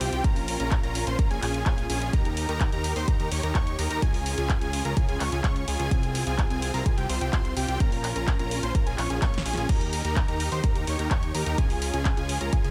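A dry, close-sounding mix with little reverb frames this short cut from a longer festival progressive house track, running at 127 BPM in a straight 4/4 with a powerful, emotional mood. A punchy, up-front electronic kick, entering at 0.2 seconds, sits loudest, while a layered house kit adds a punchy snare, bright hi-hats, handclaps and crash cymbal, with a drum fill at 9.2 seconds. Underneath, a fat analog bass with a detuned sawtooth tone and a filter sweep pumps against the kick through sidechain compression. Huge, lush supersaw chords carry the riff with a detuned, sub-octave body, pumping and trailing delay as they move through Bbm, Eb, Db and Fm/C before cycling back. Above them, a bold unison lead spins mellow arpeggios with vibrato, also breathing with sidechain pumping and delay.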